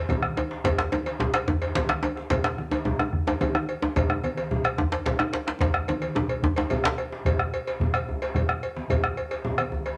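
A 12/8 pulse at 145 beats per minute, counted in dotted quarters with a straight feel, drives this driving, earthy West African traditional drum ensemble, cut from a longer piece. A round, close bombo anchors the low end while low-tuned congas with thick skins, played with soft hands in a live room, add body beneath a metallic, dry cowbell. One djembe sits distant in a large room, tight and cracking under soft hands, while a second djembe, warm, deep and up front, is struck with hard hands. A drum fill begins at 5.6 seconds, the up-front djembe stops at 7.0 seconds, and a new section takes over at 7.3 seconds. A club reverb lends the acoustic drums a lively, wet sheen.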